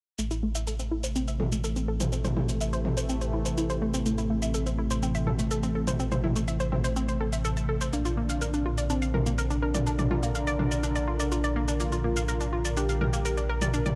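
A dark, dramatic melodic techno excerpt at 124 BPM in A phrygian opens with a rumbling, detuned saw bass, an up-front electronic shaker and toms, a bright analog pluck arpeggio with ring modulation, chorus, analog delay and a filter sweep, and a sweeping resonant pad of evolving chords carrying vintage 12-bit sampler grit. A very quiet, swarming drone with a moving notch and granular texture creeps in at 3.1 seconds. At 7.9 seconds the harmony moves from A minor to B-flat as a thick, bold unison lead with vibrato and tape echo takes the melody, all within a dry, gritty hardware sound with cassette-tape character and light reverb.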